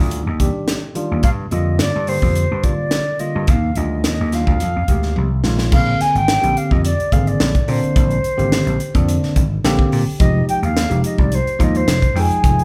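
Slick and intense, this electric jazz fusion excerpt moves at 107 BPM in a straight 4/4, with a bell-like tine electric piano and a punchy vintage slap bass opening together over a polished, airy, up-front drum kit with a high-tuned snare and punchy kick. A mellow, pure-toned silver concert flute enters at 1.2 seconds with a crisp attack, sounding distant yet expressive over Gm7, Ebmaj9 and Fm11 harmonies. A drum fill at 5.2 seconds leads into a second section built on Bb9 and Fm9, all heard as a band playing live in one room with a moderate large studio reverb.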